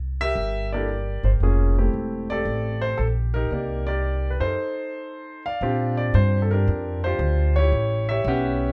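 Sophisticated and warm, this short jazz piano trio passage swings in 4/4, with a plucked, woody upright bass sitting up front from the very start. A concert grand enters at 0.2 seconds to carry the melody, its natural tone rich in deep bass and long sustain, over chords such as C9 and Fmaj9 in light reverb. A brief break arrives at 4.6 seconds before the music turns to a new section at 5.6 seconds, touching Bb6 and A13.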